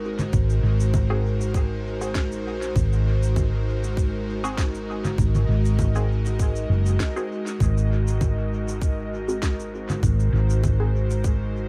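A round, dark hollow-body electric bass sits up front in this peaceful, spacious ambient dub piece, holding low over a single Ab7 chord while an airy, breathy pad with chorus sustains soft, warbling chords behind it. Electronic congas, shaker and a woody snare that carry dub echo set up a lightly swung groove, and a tight electronic kick with small room reverb joins a moment later to anchor it. From 1.1 seconds, a muted, filtered chord stab with phaser, subtle chorus and dub echo sits mellow in the background of this echo-heavy mix, which is cut from a longer piece.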